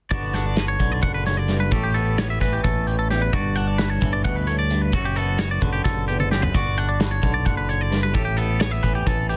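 Two clean, twangy electric guitars open together at 0.1 s, one picking chords through Gmaj7, A7sus2, Em9/G and Bm7/F# beneath the other's high, bright arpeggios, over a fingered electric bass and a loose, punchy acoustic indie drum kit with a pumping room sound, in an intricate, bright math rock and midwest emo passage in 7/8 at 262 BPM in G lydian, with a drum fill at 6.2 s and a dry, dense, heavily limited master.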